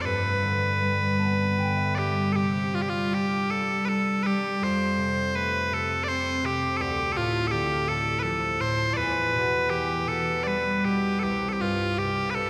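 Drenched in a church's long, wet reverb, this mournful, longing Celtic slow air in rubato 3/4 at around 76-85 BPM sets loud, piercing bagpipes up front on a continuous solo melody over the ringing, fingerpicked tones of a bright concert harp, which adds a fill from 0.8 to 2.3 seconds as the chords move from G through Csus2, F, Dm and Em to C5.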